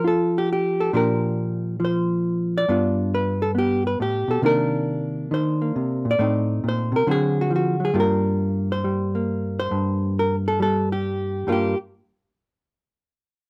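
A dark, clean hollow-body electric guitar, fingered and up front, carries this cool, swinging solo jazz piece in G minor at 136 BPM in 4/4, moving through Fadd9, Bb6, G7, Cm9, Adim and D7#11 before landing on Gm7, with its close, detailed sound bathed in light reverb, tuned to A4 = 436 Hz, and the guitar sounding until 11.8 seconds in this passage cut from a longer piece.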